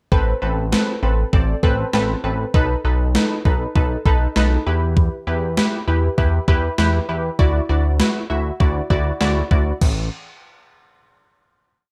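Melancholic and cool, this short synth-pop piece moves at 99 BPM in a straight 4/4, set in A dorian with chords shifting from Amadd9 through B7 and Em to Dadd9. A gated 80s digital drum machine sits up front with a thumpy kick, an overdriven, sampler-style edge and a gated reverb snare, playing a straight drum-machine beat alongside crash cymbal hits. The chorused synth bass is retro and nasal, built from pulse and sawtooth waves with a filter pluck, and drives the low end in pulsing eighth notes. Above it, a funky polysynth comp adds punchy, detuned, wave-folded chords in close voicing with a filter sweep and chorus, comping in eighths. After the verse ends at 9.8 seconds, a final note rings out to close the piece, all wrapped in a light reverb.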